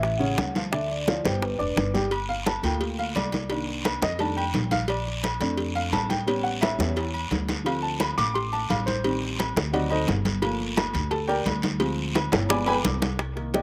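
Afro-Cuban jazz in G minor at a brisk 173 BPM, sophisticated and sultry, this fragment opens with a mellow, soft-mallet vibraphone melody carrying a slapback echo that ends at 1.9 s, before the boxy, short-sustained upright piano takes a solo from 2.1 s over a jazz progression of minor sevenths and altered dominants. A growly, thumpy pizzicato upright bass sits up front beside ringing, medium-tuned congas and tight, high-tuned bongos and cowbell played with hard hands. Metal-shell timbales and agogo bells with their own slapback echo, plus a raspy, band-limited vintage guiro, fill out the percussion in a dry, outdoor sound with little reverb, punctuated by drum fills.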